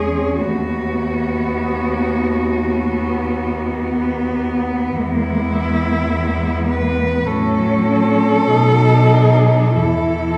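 Heard from further back in a reverberant recital hall, this short cut from a longer classical piece sets four bowed cellos in a serene, lyrical mood at a slow, rubato 46-54 BPM in 4/4. A rich, up-front cello sings the melody with vibrato and expressive portamento, a warm, more distant cello shapes a second line beneath it, a focused background cello carries the accompaniment, and a rich, smooth-topped bass cello anchors the low end. The harmony moves from B7/D# at 0.4 s to E at 5.0 s, then through F#m/A and B before the chords give way at 9.7 s.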